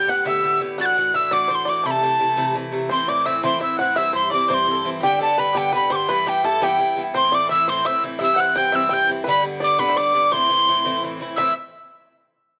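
A straight 6/8 jig rhythm drives this short Celtic folk piece, cut from a longer tune, with a wild, driving energy from start to finish. The tin whistle carries the melody high and up front, its airy, mellow tone marked by vibrato, crisp tongued notes and a breathy chiff. Behind it, a fingerpicked bluegrass banjo adds a bright, twangy, percussive second line, while a picked mandolin shares that role with a round tone from its paired strings, both sitting in the background. Lower down, an Irish bouzouki supplies the accompaniment with a metallic ring from its picked double strings. All four instruments play together throughout the 11.5 seconds, moving over chords that circle through Am, C, G and Em, and a light reverb gives the ensemble the feel of a small room.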